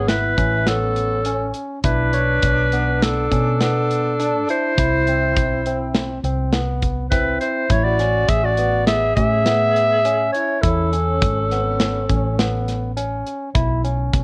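Moving in a straight, uneven five-beat meter, this bright, intricate progressive band piece sets a clear, smooth-topped clarinet melody up front over a breathy alto saxophone second line with vibrato, subtone and scooped notes, both stopping at 13.0 seconds. Underneath, a barky, clean tine electric piano plays arpeggios, a dark, round hollow-body bass sits up front, and an acoustic drum kit with a punchy kick, a medium-tuned snare and hi-hat enters at 0.1 seconds. Chords of Amaj7, E7sus4/B and Cmaj7 pass beneath a moderate studio reverb and a worn, warbling cassette-tape pitch drift, in a fragment cut from a longer piece.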